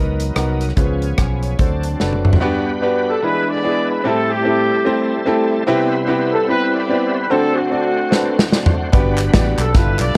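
A swung 4/4 pulse at 147 BPM drives this soulful, uplifting uptempo gospel excerpt in G major, where a clear, intimate baby grand piano with audible action noise plays the accompaniment and a shouting, lightly overdriven tonewheel organ with key click, chorus vibrato and slow rotary speaker sustains chords throughout; a fingered electric bass and punchy small-room drum kit drop out after a piano and drum fill ending at 2.4 seconds and return near the close, a dark, distant horn section with light vibrato and tape echo carries the melody from 3.1 seconds, and crisp group handclaps join at 9.2 seconds, with light reverb over a warm production.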